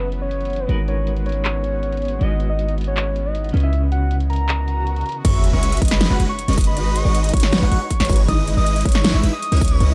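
Future bass in a half-time feel, this bittersweet, dreamy passage from a longer piece has a dark, warm production with little reverb. A round, octave-layered synth lead carries the melody throughout with chorus, vibrato and digital delay. A deep, boomy 808-style bass sits up front, and a big-room dance kit with a huge snare, metallic hats, handclaps and crash plays under low-pass filtering. In the opening half, a clean, twangy electric guitar with tremolo and a shimmering, ethereal pad with a warbling, vintage, granular character supply the accompaniment. A swell and sub drop rises in the background from 4.7 s, and at 5.2 s the drop arrives with a punchy electronic kick, huge, lush, bright supersaw chords run through a phaser, and airy background arpeggios with portamento. Sidechain pumping makes the melodic parts and bass breathe around the beat as chords like F#9sus4, G#m7 and Emaj7/G# cycle beneath.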